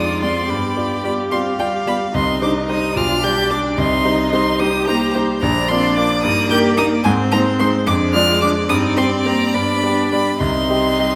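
A quick, cheerful and lively classical-period movement for piano quintet in 6/8, cut from a longer piece, where a clear, up-front violin carries the high melody with smooth vibrato as a distant second violin and a rich, background cello shape supporting lines, while a vintage-toned grand piano with short sustain and a close viola provide the accompaniment inside a wet recital-hall reverb.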